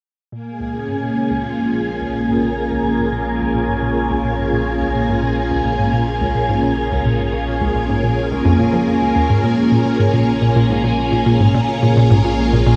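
This ambient, sequencer-driven space music excerpt moves at 107 BPM in a straight 4/4 in Bb minor, and it feels expansive and hypnotic as it rests on a single Bbm7 chord from 0.3 seconds. A lush, vintage string machine ensemble holds sustained chords between Bb3 and Bb4, sitting bright and up front with a phaser's moving notch and ensemble chorus thickening its sawtooth tone. Alongside it, a hollow, bouncy square-wave pluck fades in with a riff between Db2 and F3. Its fast attack and short decay are spread out by chorus and delay, while detuning and wave-folding keep it evolving. From 1.8 seconds an analog drone also fades in on a low Bb1, its dark, warbling pulse-width-modulated tone colored by chorus. High above, an airy, breathy wind-like noise texture on Ab5 breathes through its own built-in reverb, and a huge, wet ambient reverb with an 8.0-second decay washes the whole mix into a deep, spacious haze.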